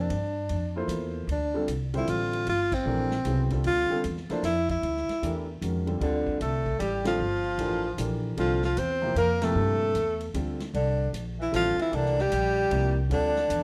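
Intense yet cool, this modal jazz excerpt in G dorian swings at 152 BPM in 3/4 over a G9sus4 chord, with an up-front, vibrato-rich tenor saxophone carrying the melody through a slapback echo, a warm baby grand piano comping, woody pizzicato upright bass, and a big-band drum kit with a punchy kick and ride cymbal, while a breathy, distant alto saxophone adds a whispered second line from 6.0 seconds and band accents strike at 2.7, 7.0 and 9.4 seconds in a dry, close 1970s-style studio sound with small room reverb.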